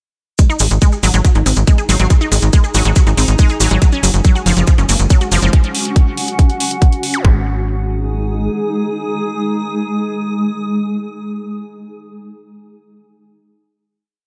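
A dry, close-sounding mix opens this psychedelic trance piece at 140 BPM in a straight 4/4, its mood alien and driving. An up-front, tight electronic kick pounds four-on-the-floor with layered metallic hi-hats, while grainy maracas sit in the background with hand-played sixteenths and a punchy, nasal sequencer bass gallops in sixteenth notes beneath. A lush, detuned unison pluck carries a bright acid riff with accents, pumping against the kick and trailing delay, as a cloudy, wave-folded granular pad drifts in at 1.5 seconds with slowly shifting chords. A very quiet, saturated FM wobble bass adds short answering phrases, and from 4.2 seconds a swarming, tense drone holds a single note under its own reverb and pumping. The groove moves between G#5 and F#5 harmonies, and after a brief zap at 7.1 seconds the music settles onto a final G#5 chord where the pad and drone linger.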